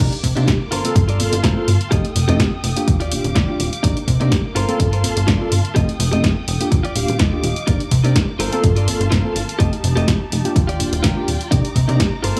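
Filtered disco house at 125 BPM in C dorian opens at once with a full groove: an electronic kick drum with a punchy, tape-warm character and a dry, overdriven analog drum machine playing snare, hi-hat and crash, under a funky, plucky analog bass, all but the drums pumping with the sidechain behind a low-pass filter. A mellow tine electric piano with phaser and 12-bit sampler grit carries the chords, a bright, direct-recorded clean guitar picks a riff with a fill from 6.7 to 7.7 seconds, and a dark, woody string section sustains lush, distant chords through a cycle of Cm9, Gm11, F9 and Ebmaj9. The mood is nostalgic and sensual, set in light small-room ambience, and this excerpt is cut from a longer piece.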